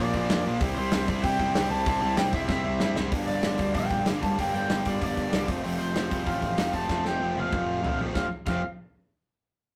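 Rowdy and energetic, this punk rock excerpt charges along at 191 BPM in F major, with a bright, overdriven lead guitar carrying the melody over two picked, distorted rhythm guitars (one bright, the other sludgy and warm) and a growling, overdriven bass sitting in the background. A loose acoustic drum kit sits up front with a tight kick, medium-tuned snare, hi-hat, toms and crash, throwing in fills at 2.5 and 6.9 seconds as the chords move from Bb and C to G minor and F. The rough rehearsal-room sound carries tube saturation and a moderate small-room reverb, and the drums have a pumping room feel.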